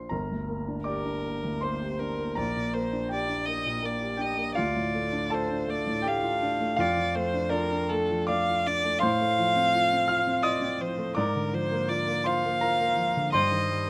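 Tender and warm, this excerpt of a romantic classical duo moves at 82 BPM in a flexible, rubato 3/4, opening in G minor and turning toward Bb major at 9.0 s. A grand piano with a natural tone carries the accompaniment across a broad register, and a single bowed violin, woody and touched with light vibrato, enters with the melody at 0.9 s. Both instruments sit up front, captured by close, detailed microphones in a light reverb.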